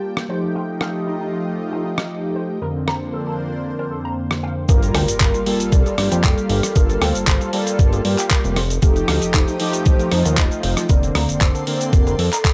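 A round, dark synth brass sits up front from the opening, its detuned sawtooth tone colored by ring modulation, a filter sweep, chorus and tape echo, and it pumps against the sidechain in this sensual, groovy nu-disco cut at 116 BPM in G minor, with a light 16th-note swing. Behind it, a lush, bright unison pad holds slow-attack sustained chords through phaser and chorus, while a dusty, compressed soul drum kit of handclaps, hi-hat, rim click and shaker enters at 0.2 seconds, and a clean, twangy electric guitar with an envelope filter plays a scooped riff in the background. The harmony moves through rich ninth chords such as F9, Gm9 and Bbmaj9/F. At 4.7 seconds the drop arrives: a thumpy, overdriven electronic kick lands up front, a fat, nasal analog bass with tube saturation pumps underneath, an electronic impact hits in the background, and a mellow vibraphone with soft mallets and fast motor vibrato adds a metallic, ringing melody from a boxy small room. 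The whole excerpt has a dry, gritty hardware sound with digital ambience, and it is cut from a longer piece.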